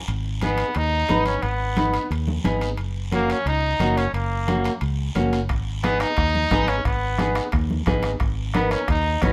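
Passionate and danceable, this cumbia excerpt at 177 BPM in G# minor is led by a bright, punchy trumpet solo with vibrato and a forceful vintage pop style, set up front over a round fingered electric bass, dark picked clean electric guitar, raspy guiro, ringing metal-shell timbales in the background and soft-handed congas, with a soft-beater bombo entering at 5.5 seconds as the chords move from G#m to F# and back, all in moderate studio reverb.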